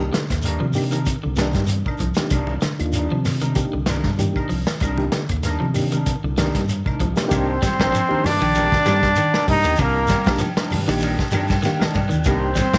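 Afrobeat in C minor at 96 BPM with a driving, defiant swing, built on a crunchy, saturated breakbeat kit with a punchy kick, round fingered electric bass, a reedy electric piano with fast tremolo, one slightly broken-up guitar picking arpeggios through spring reverb and tape echo, a twangy second guitar playing stabs with subtle chorus, and grainy shekere, woody claves and distant low-tuned congas in the background. A drum fill at 6.4 seconds leads into a brilliant, up-front trombone melody with light vibrato and a clear, scooped trumpet second line entering at 7.4 seconds, capped by an electric piano fill at 11.0 seconds in this excerpt cut from a longer piece.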